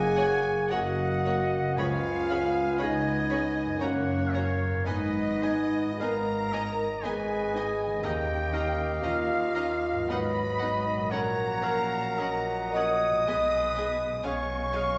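Mellow French horns hold sustained chords at the front of this serene, slow romantic orchestral movement in triple time, its pulse pliant with rubato, while a distant, lush violin section carries the expressive melody and a second, clearer violin section plays a secondary line in the background. Around them, a vintage-toned oboe, an airy flute and a smooth-topped clarinet weave secondary lines, and a punchy, roomy bassoon and barely audible violas with portamento fill the accompaniment. Ringing harp arpeggios and rich double basses with focused cellos round out the texture, hard-mallet timpani sound only for the first 3.3 seconds, and the passage sits in a wet recital-hall reverb with a dark, rolled-off top.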